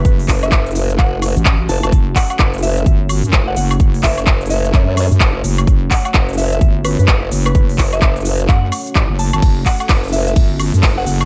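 Bass house at 128 BPM in F# phrygian with swung 16ths, this aggressive, bouncy excerpt holds on F# minor as a punchy, up-front electronic kick and an overdriven big-room kit of crisp hi-hats, handclaps, ride cymbal, shaker and woodblock drive a heavy, saturated square-and-sine wobble bass, joined at 0.3 seconds by a formant-filtered pulse-wave wobble bass, both pumping against the kick, while a detuned, evolving sawtooth pad with a slow attack and a soft, pure FM bell melody with digital delay sit in the background.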